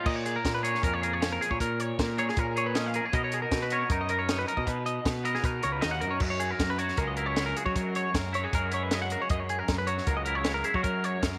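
Wistful and bright, this math rock and midwest emo piece at 156 BPM in 4/4 sets a clean, compressed twelve-string electric guitar playing up-front arpeggios over a twangy electric guitar accompaniment bathed in lush chorus, a fuzzy, overdriven picked electric bass, and a dry, compact cocktail drum kit with punchy kick, high-tuned snare, hi-hat and dark crash cymbal, as the harmony moves through A#m7, Bmaj7 and F#13 inside a small room's echo chamber reverb.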